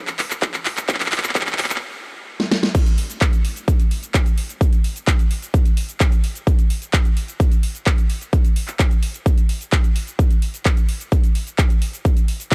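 Anthemic and uplifting, this EDM excerpt runs at 129 BPM in a straight 4/4 and is carried entirely by percussion. A big-room dance drum kit opens at 0.1 s with a build-up full of fills, its huge snare, metallic hats, crash cymbal, handclaps and cabasa sounding layered and up front, re-recorded in a small room. An electronic kick drum joins at 0.4 s, punchy and sitting louder than the kit, with a high-pass filter shaping both the kick and its room sound. After a brief stop at 1.8 s and one more fill, the drop lands at 2.7 s and the full beat drives on to the end. The sound is dry and close, giving the drums a produced character.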